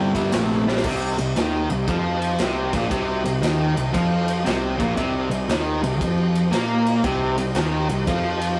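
A fuzz guitar riff opens the clip on a C5 power chord, bright, double-tracked and compressed, sitting up front, joined at once by a dark, round fuzz-overdriven picked bass and a big acoustic rock kit with a boomy kick and medium-tuned snare. This is brooding, gritty blues rock in the power-trio and southern rock vein, moving at 116 BPM in 4/4 with a swung eighth-note feel in C minor, tuned slightly flat to A4 = 437 Hz. A drum fill at 0.6 seconds leads into the main section at 0.8 seconds, where the harmony settles on C minor. Behind the band, a bright, shouting tonewheel organ holds sustained chords from 0.5 seconds, lightly overdriven with key click, chorus vibrato and a slow rotary speaker, sitting in the background. The kit works across crash, ride, snare and kick under moderate studio reverb. The sound is that of a rough rehearsal room with a saturated edge, and the clip is cut from a longer piece.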